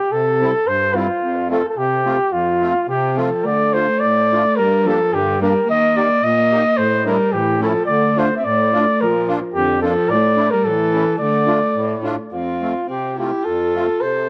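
Jolly and festive, this short alpine folk excerpt in a rubato 2/4 feel features a distant, vibrato-rich flugelhorn carrying the melody up front in a classical style with plate reverb and analog delay, over a reedy, shimmering musette accordion with a dark edge, joined at 2.9 s by a single floating, sul tasto viola whose soft, bowed second line continues through the minor-key middle passage until the opening returns at 12.3 s.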